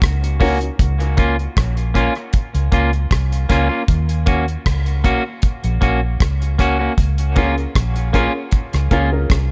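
A muted, fingered electric bass anchors this short dub reggae excerpt, its dark, round, foam-muted tone sitting up front between Bb1 and Eb2 at a relaxed 78 BPM in straight 4/4. A damped 70s drum kit plays throughout, with a tight kick, hi-hat and rim click that sound dry and polished, its top end rolled off. A clean, bright electric guitar is picked as accompaniment from 0.4 seconds, carrying dub echo, while a mellow, woody upright piano, slightly detuned and boxy, adds echoing stabs, first briefly at 0.4 seconds and again from 7.4 seconds. The harmony in Db major moves between Ebm7 and Db6, and a small room ambience gives the hazy, spacious mood its air.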